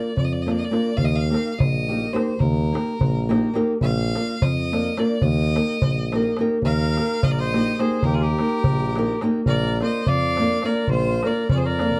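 Balkan folk in wedding-band style, wild and festive at 212 BPM in 5/8 and Eb major, cut from a longer piece: a bright, biting, distant bowed fiddle with light vibrato carries the melody over an up-front fingerpicked nylon-string guitar, a mellow, soft-attacked tuba bass in classical style, and a crisp, close metal-shell darbuka played with soft hands, and at 6.6 s a reedy, mid-forward accordion adds a second line, all within a small room and a dark production.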